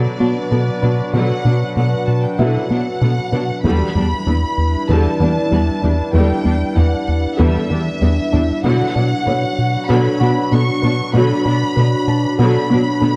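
A dark, moderately reverberant scoring-stage sound frames this brooding, futuristic excerpt from a hybrid orchestral and electronic film score in a straight 4/4. A lush violin section carries the melody high in its register with smooth vibrato, while a rich viola section bows the accompaniment beneath it and a shadowy cello section enters in the background at 0.2 s to hold the bass. On the electronic side, a rubbery, bouncy square-wave bass riff stands out as the most prominent part, joined by a warbling, lo-fi tape-like pad that sustains chords with chorus and its own reverb. A woody wave-folded pluck spins very quiet arpeggios with a filter sweep, and a felt-muted upright piano adds a soft, intimate texture with audible action noise. The harmony moves from B minor to E minor seventh at 3.6 s and returns to B minor at 8.6 s.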